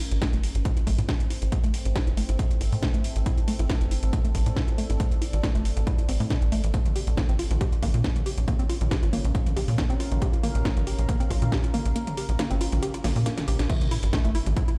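A straight 4/4 pulse at 138 BPM drives this dark, industrial peak-time techno in A phrygian, anchored by a punchy, up-front electronic kick and a tight, wave-folded sawtooth sequencer bass, with a techno kit of cracking snare, metallic hats, crash and toms whose hats, crash and toms pump against the sidechain. Above them, a warbling, lo-fi detuned pluck riff carries dub echo and tape wobble while a filter sweep runs, and a deep, moody sub-octave pad sustains softly as the chords move from Am to Bbm at 6.7 seconds. The kick falls away at 12.0 seconds, a drum fill leads into a drop with an impact at 13.7 seconds back on Am, and a very quiet sub drop closes this cut from a longer track, all set in a big, reverberant room.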